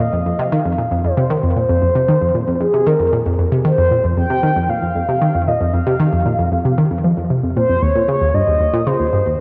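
Ambient music with a mysterious, cosmic mood, this excerpt moves at 115 BPM in a straight 4/4, tuned to A4 = 436 Hz. A mellow, horn-like synth lead carries the melody between Ab4 and G5, its round tone built from sawtooth and triangle waves, with a soft attack, sustained notes, vibrato and a filter sweep. Beneath it, an analog pluck plays a low riff from Eb2 to F3, sounding bright and detuned, with square and sawtooth waves, a triangle layer, ring modulation, a noise layer, a fast attack and a short decay. Both parts sit up front, play for the full 9.4 seconds, and are treated with chorus and delay. The harmony rests on F5 until a shift to Eb at 7.8 seconds. A lush hall reverb with a 2.6-second tail soaks the dark, warm production.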